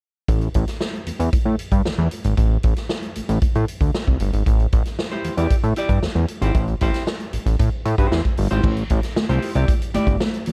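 Funk excerpt in A minor at 115 BPM, driving and cool, with a fat, detuned sawtooth analog bass sitting up front over an Am7 chord alongside a swinging big-band drum kit whose punchy kick, snare, hi-hat and crash sound natural and roomy. A clean, dark electric guitar with subtle chorus joins at 5.1 seconds, and bright, high-tuned congas with a vintage, band-limited edge enter at 8.6 seconds for the closing section. The dry, dark production keeps the groove close and intimate.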